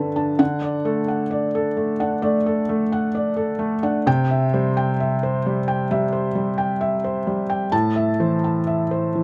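Close, detailed and softly reverberant, this brief neoclassical minimalist fragment features a lone felt-muted upright piano, mellow and intimate with audible action noise, drifting in rubato around 66 BPM through D, C and A minor with a tender, hopeful air.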